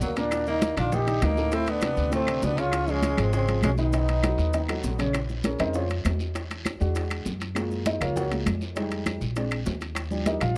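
Afro-Cuban jazz with a sultry, driving feel, this brief excerpt opens with a roomy trombone singing the melody with vibrato up front while a growling, gritty tenor saxophone with tape echo carries a second line beneath it, both dropping out at 4.8 seconds. A natural-sounding baby grand piano and a woody pizzicato upright bass run throughout, joined by a bed of percussion: thick-skinned congas, round low-tuned bongos, ringing metal-shell timbales, very quiet claves, raspy guiro and grainy maracas. After a drum fill, the piano takes a solo from 5.1 seconds over rich jazz chords, all captured in a dry, close 1970s-style studio sound with small room ambience.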